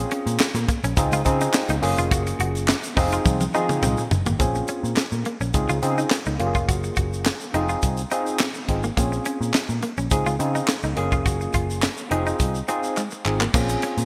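Early-eighties boogie funk at 105 BPM in Bb minor, danceable with a late-night glow, built on a looping Bbm9, Dbmaj9, Gbmaj9, Fm7 progression. A tight, up-front funk kit with a high-tuned snare, handclaps and gated reverb drives it alongside a dark, round, foam-muted picked bass, while a barky, lightly overdriven tine electric piano with lush chorus carries the chords and a clean, hollow-bodied semi-hollow guitar plays a riff with subtle chorus, joined by a grainy tube shaker. The bright digital production frames drum fills at 3.3 and 13.0 seconds in this fragment cut from a longer piece.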